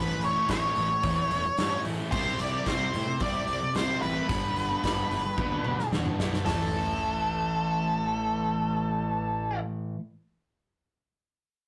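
A straight 4/4 pulse drives this bittersweet, restless quiet-loud alternative rock excerpt, where a dark, picked octave-fuzz lead guitar carries the melody up front over a double-tracked, crunchy overdriven guitar riff and a growly fuzz bass, while a big-room rock kit with punchy kick, medium-tuned snare and bright cymbals plays a fill from 5.4 s before dropping out at 6.6 s as the chords move from A through Cadd9 and G to A5, all in a rough rehearsal-room sound with tube saturation and moderate reverb.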